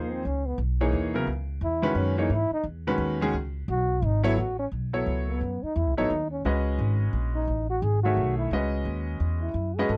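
Searching and cool, this fast modal jazz waltz, cut from a longer piece, features a dark, breathy trombone soloing with light vibrato and a soft attack over a clear, worn concert grand piano and a woody, thumpy pizzicato upright bass, all up front in a dry, close 1970s-style studio sound.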